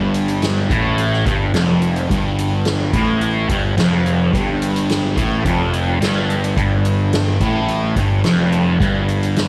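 Psychedelic rock with a hypnotic, dark mood, this short cut from a longer piece rests on a single Fadd9 chord, as an up-front, double-tracked fuzz guitar riff, distorted and phased, rides over a round, overdriven picked electric bass, while a soft-mallet drum kit with a boomy kick, medium-tuned snare and hi-hat sits back in a natural hall sound, framed by light studio reverb.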